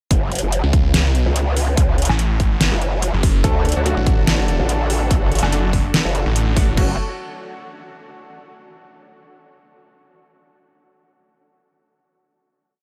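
A growling, wobbling bass with a detuned, formant-filtered edge sits up front from the very start of this heavy wobble dubstep piece, its modulated phrases shifting in wobble speed over a chaotic, aggressive half-time groove. A snarling sawtooth bass joins at 0.6 seconds with chopped, distorted phrases that answer the first. Underneath, a punchy, tape-tinged electronic kick and an overdriven drum kit carry the swung beat, the kit's deep snare, metallic hats, low woodblock and crash sounding re-recorded in a small room. At 3.4 seconds the harmony shifts, and a lush, airy unison pad with a slow attack and sidechain pumping arrives alongside a brilliant grand piano that plays a repeating riff in octaves, set back in the mix with delay. Sparse, bold orchestra-hit-like stabs in rootless voicings echo through their own reverb and delay in the background until the drop gives way to a final chord at 6.8 seconds, the piece framed by a digital ambience.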